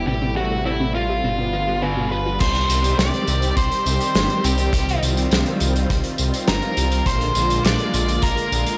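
Bright 1980s-style digital production and a lush hall reverb frame this uplifting, nostalgic synthwave fragment, where a dark, distorted octave-fuzz lead guitar carries the melody up front over a nasal detuned unison pad and a thick, saturated saw bass, both pumping with sidechain, while a round analog pluck plays arpeggios in the background until 2.3 s, a loose indie kit with low-pass-filtered cymbals and gated reverb keeps time, and a punchy kick joins at 2.4 s as the chords move from Am7 and G7 to Cm.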